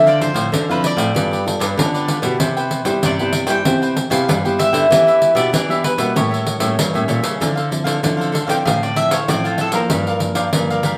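Samba and choro in D minor at 96 BPM, nostalgic and yearning, with a round, double-strung picked mandolin carrying the melody and soloing from 7.4 seconds until it stops at 10.3 seconds, over crisp, bright cavaquinho, a small fingerpicked nylon-string guitar, a full-bodied thumb-plucked nylon-string guitar on the bass line and a jingly, hard-handed pandeiro up front, all played live in one room with a wet studio reverb across chords such as Dm9, G9, Cmaj7 and A7b9 in this short excerpt cut from a longer piece.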